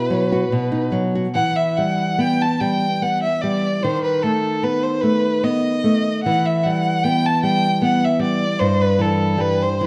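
Elegiac and solemn, this romantic duo in E minor moves at 75 BPM in a rubato 3/4 with uneven beats, as a single rich, smooth bowed violin with vibrato sings the melody over a small, fingerpicked nylon-string guitar accompaniment, both up front, while the harmony turns from B to E minor by 1.4 seconds and the dark production blooms in a reverberant recital hall on this passage cut from a longer piece.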